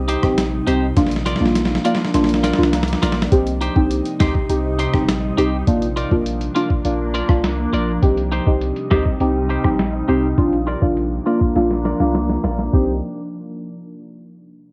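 A dark, wave-folded chord stab with chorus and phaser and an ethereal FM pad with ensemble chorus and sidechain pumping open this sultry, hypnotic dancehall excerpt in C minor at 102 BPM alongside a punchy sine sub bass with a pitch-drop attack, as the harmony moves between Cm and Bb. A gritty, pitched-down boom bap sampler-style kit with a thumpy kick, medium-tuned snare, rim click and hi-hat sits up front beside the stab, while a bright, clean semi-hollow electric guitar plays picked arpeggios. Drum fills arrive at 1.0 and 11.6 seconds and a filter sweep runs from 3.3 seconds, all within a lo-fi home cassette recording with a low-pass filter, light reverb, and tape coloring on the stab, pad, guitar and drums.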